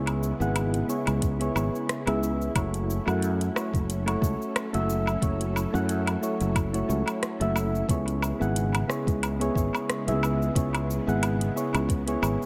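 Relaxed and wistful, this sunset chillout excerpt moves at 90 BPM in 4/4 with a gentle 16th-note swing, set in F# minor and tuned slightly flat of standard pitch. Up front, soft electric-piano-like synth keys with a round, warbling tone carry the accompaniment, coloured by chorus, vintage 12-bit sampler grit and analog delay. A growly fretless electric bass sits equally forward, its sustaining low notes thickened by tube saturation and analog chorus. Behind them, a silky string machine holds slow-blooming chords through its ensemble chorus, while a smooth R&B kit of cabasa, metallic hi-hat, rim click and woodblock adds tape-toned texture through analog delay. A soft electronic kick enters at 1.2 seconds. The echo-heavy mix, bathed in light reverb and digital ambience, drifts over a C#m7 to F#m7 progression that returns to C#m7 at 7.9 seconds.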